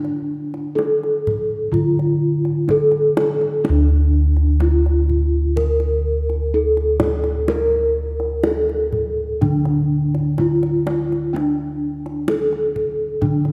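Heard through a moderate concert-hall reverb, this 13.5-second cut from a longer Javanese gamelan piece has a hypnotic, shimmering character in straight 4/4 time. Up front, a bronze metallophone carries the melody with padded disc mallets, its paired tuning producing beating shimmer in a mellow, band-limited, vintage tone, while bossed gongs anchor the bass with a round, dark, smooth resonance. Lower in the balance, the kendang adds tight, acoustic percussion played with soft hands in a live-room sound.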